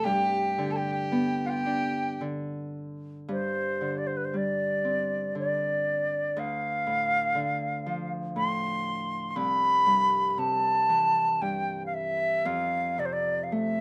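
A bright wooden flute, a ringing, fingerpicked Celtic harp and a biting, bowed fiddle open together in this wistful, pastoral Celtic slow air, cut from a longer piece and moving freely in rubato triple time. The fiddle's earthy second line, heard at a distance, stops at 2.2 seconds. The airy, tongued flute melody, with its expressive vibrato, then stays up front over the mellow harp as the harmony drifts from G through Gsus4, Dm and Cmaj7 to Fmaj7, with moderate studio reverb giving the rough home-demo mix a modest sense of room.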